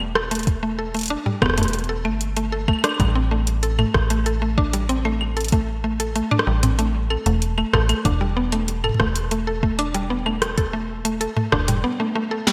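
A metallic FM bass with a fast, decaying attack opens this eerie, cerebral IDM excerpt alongside a booming analog drum machine whose claves, rim clicks, tonal snare, toms and metallic hats sit up front in gated reverb, and a softer, tape-warmed electronic kick joins at 0.5 s. A woody, round, mallet-like synth pluck enters at 0.2 s with bright arpeggios, colored by chorus, cassette-tape character and digital delay, as the harmony moves from Em7 to Am7 and back. The bright 1980s-style digital production places everything in a lush hall reverb.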